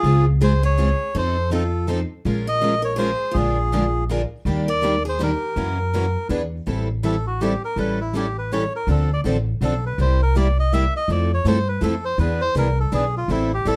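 A swung 3/4 lilt at 163 BPM drives this bittersweet, virtuosic jazz manouche excerpt, where a reedy, breathy melodica carries the melody up front and takes a solo from 6.7 s as the music settles into A minor, over a thumpy, woody pizzicato upright bass on gut strings, a boxy parlour steel-string guitar playing a brief second line that stops at 5.5 s, and two bright picked steel-string guitars on accompaniment, one with audible finger squeak and the other plugged in and set in the background, the whole mix sitting in a dark production with light reverb.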